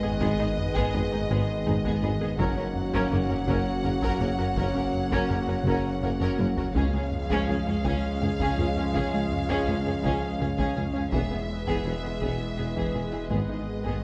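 Hard-stick taiko drums drive this relentless, futuristic cut from a hybrid orchestral and electronic film score in a rolling 6/8, breaking into a fill at 6.2 seconds. Lush, vibrato-rich violins carry the melody over a second violin line, a rich, distant viola section adds accompaniment, and mellow French horns, trombones and a hollow, flute-like chorused pad sustain the chords. A tight, detuned sequenced synth adds quiet arpeggios, while a dark cello section and a thick detuned saw bass fill the low end from the start, joined by a mellow tuba and a woody double bass section at 0.2 seconds, all set in a wet concert hall reverb.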